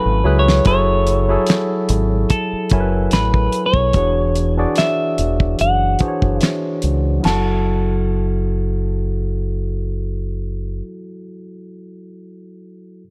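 A dark, warm production with a small-room ambience frames this sultry, late-night R&B and neo-soul excerpt in F# minor, moving at an unhurried 73 BPM in 4/4 with a light sixteenth-note swing. A damped 70s drum kit sits up front with a fat snare, tight kick, dark cymbals, hi-hat, crash and handclaps, opening on a short fill before it drops out at 7.5 seconds. Beneath it, a deep, round dub bass played with the fingers gives a punchy low end. A barky tine electric piano, lightly overdriven through a combo amp and filtered, carries the chords from F#m9 to E13 and then settles on F#m7 as a second section begins. Over this, a twangy, picked clean electric guitar plays the melody high in its range, softened by a low-pass filter, and it ends with the bass at 10.8 seconds, leaving the electric piano alone until 13.0 seconds.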